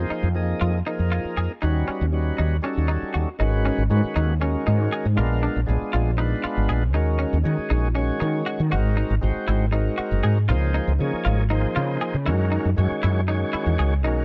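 Jazz in an intense, funky 7/8 with a straight feel, cut from a longer piece, where a round, hollow-toned fretless bass sits up front under thick, lightly overdriven tonewheel organ chords with key click and slow rotary speaker, while a bright, twangy clean electric guitar adds compressed, picked stabs with subtle chorus, all in a dry, dark production as the harmony moves from Fm7 into a richer progression of ninths and altered dominants from 3.4 seconds.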